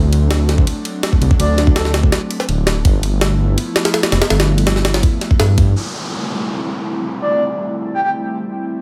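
A lightly reverberant mix opens this atmospheric, frenetic drum and bass excerpt in A minor at 165 BPM, where an airy, breathy pad with chorus sustains chords from D7 through G13 to Am7 beneath a deep, rumbling detuned saw bass and a gritty, pitched-up jungle sampler kit with a thumpy kick, high-tuned snare, ride cymbal and small-room ambience. Both bass and drums stop at 5.7 seconds, after which an electronic downlifter sweeps in beside the lingering pad. A soft, flute-like synth lead with vibrato, subtle chorus and dub echo appears briefly at 1.4 seconds and returns at 7.2 seconds.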